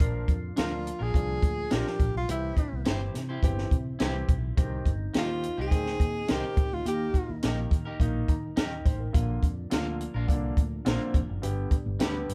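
Uptempo 1960s-style soul with a joyful, danceable feel, played by a band live in one small room. A close-miked tenor saxophone carries the melody up front from 0.6 to 7.4 seconds with jazz-style vibrato, over a punchy, high-tuned cocktail drum kit, a round, dark fingered electric bass and an intimate grand piano with audible action noise that adds a fill at 8.0 seconds. Twangy, slightly broken-up guitar adds stabs with spring reverb, while a mellow tonewheel organ through a fast rotary speaker with chorus vibrato holds chords in the background.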